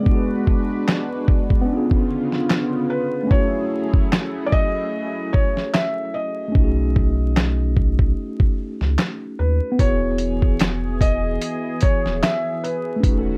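Lo-fi hip hop at 74 BPM in 4/4, with a gentle swing on the sixteenths, this nostalgic, reflective excerpt is cut from a longer piece. A felt-muted upright piano carries the melody, soft and intimate with audible action noise and thin felt, passed through a low-pass filter and analog delay. Beneath it, a worn, slightly out-of-tune tine electric piano plays accompaniment, lightly overdriven as if heard through built-in speakers, while a smooth, detuned sawtooth pad holds long chords with chorus and a moving notch. The sampler-style drum kit sits up front, compressed, pitched down and muffled, with a thumpy kick, a medium-tuned snare, hi-hat and handclaps. A deep, thick saturated sub bass enters at 6.6 seconds, and the chords drift from G#m7b5 through C#7b9, F#m9 and B13 to settle on Emaj7 at 9.8 seconds, all wrapped in light reverb and vinyl crackle.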